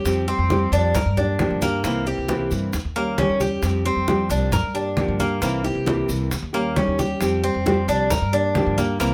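Relaxed and danceable, this short clip from a longer Cuban son and guajira piece moves in a straight 4/4 at an easygoing 134 BPM. Up front, the Cuban tres plays arpeggios with a metallic, double-strung bite and some octave-doubled strings, set against the full-bodied, fingerpicked accompaniment of a classical nylon-string guitar. An upright bass played pizzicato on gut strings supplies a woody, thumpy low end. From 0.1 s, the percussion joins: bright, low-tuned congas with a thin skin, round bongos struck with hard hands sitting in the background, and grainy, mellow maracas that sound distant, as if heard in a large room. The harmony cycles through Fsus2, Gm7, C7 and Eb7 under a light reverb that gives the acoustic ensemble a gentle sense of space.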